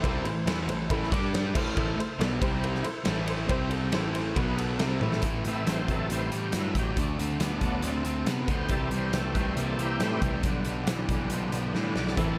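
Brooding and swaggering, this classic rock passage opens with a big, dark acoustic drum kit up front, punchy kick and all, while a fuzzy overdriven picked bass, a bright compressed distorted guitar, a warm overdriven guitar and a very quiet double-tracked fuzz guitar grind out the riff over a jangly, detuned honky-tonk upright piano and a distant metallic cowbell. After a drum fill, the piano, fuzz guitar and cowbell drop out at 5.2 seconds, and the shouting tonewheel organ, lightly overdriven with key click, chorus vibrato and a slow rotary speaker, takes a solo over changing chords. A second drum fill at 11.7 seconds brings the piano, fuzz guitar and cowbell back briefly before the cut, all sitting in a moderate studio reverb.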